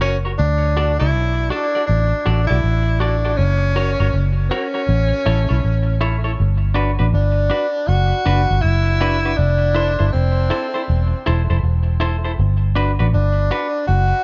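A dark, warm studio mix with light reverb and a rolled-off top end carries this uplifting, laid-back roots reggae piece at 80 BPM in 4/4, swung on the sixteenths and cut from a longer performance. Up front, a clear but distant tenor saxophone with light vibrato and tape echo carries the melody, while a bright, clean, compressed semi-hollow electric guitar, also with tape echo, plays picked accompaniment over a round, punchy, foam-muted fingered electric bass. The harmony moves from D through F# and A in the first 6.4 seconds, then alternates between Gmaj7 and Fmaj7 until the saxophone stops at 14.2 seconds.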